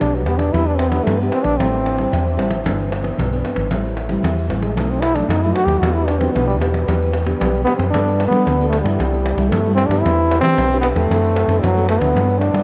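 Bittersweet yet lively, this samba and choro piece moves at 114 BPM in 4/4, starting in E minor and shifting to G major at 7.9 s. A warm, jazz-style trombone sits up front with light vibrato, scooped notes and a touch of delay, taking a solo through the opening 7.9 s over thumb-plucked classical nylon-string guitar with a subtle chorus, a dark, round hollow-body electric bass, and a jingly acoustic pandeiro. The whole mix is dreamy and soaked in a huge ambient reverb, and the passage is cut from a longer piece.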